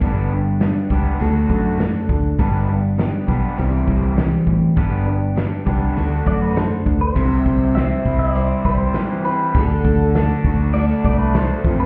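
Folk rock with a heartland rock drive, this short, nostalgic open-road cut from a longer piece moves at 101 BPM in a straight 4/4, with a bright picked steel-string acoustic guitar, an overdriven double-tracked garage guitar riff, a dark, round fingered bass sitting up front, and a natural country kit with a fat snare and punchy kick, all cycling through G, D and C. At 6.3 seconds a clean, compressed electric guitar adds a scooped melody touched with subtle chorus and tape echo, and at 7.2 seconds a very quiet, flute-like tonewheel organ slips in with soft sustained chords through a slow rotary speaker, its key click faintly audible. The whole mix sounds muffled, as if heard through a wall, with a light small-room ambience and stone room reverb.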